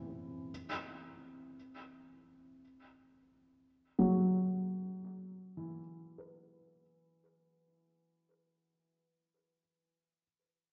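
A felt-muted upright piano plays alone in this brief ambient fragment, cut from a longer piece and lasting about 10.2 seconds. Its tone is soft, dark and boxy, with the thick felt giving the notes an intimate, mellow quality, and it sits up front while moving between E3 and B4. A tape echo trails the piano, and the whole recording is bathed in a wet concert hall reverb with a 2.0-second decay. A worn, old cassette character adds a warbly pitch drift, lending the sound a faded, wavering feel. Unmetered and in free time, the mood is serene and reflective, with a fade-out running from the start through 6.8 seconds.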